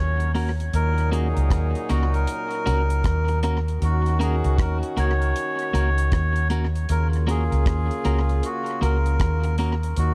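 Serious and meditative, this roots reggae excerpt moves at 78 BPM in Eb minor, resting on a single Ebm7 chord with a swung sixteenth-note feel. A reedy, nasal melodica carries the melody over a distant horn section with light vibrato, both soaked in tape echo, while a round, foam-muted electric bass sits up front, a dark, tight-kicked drum kit of hi-hat, kick and rim click enters at 0.2 seconds, and a clean, compressed electric guitar adds accompaniment from 0.3 seconds. The echo-heavy mix is set in a small room ambience, and the clip is cut from a longer piece.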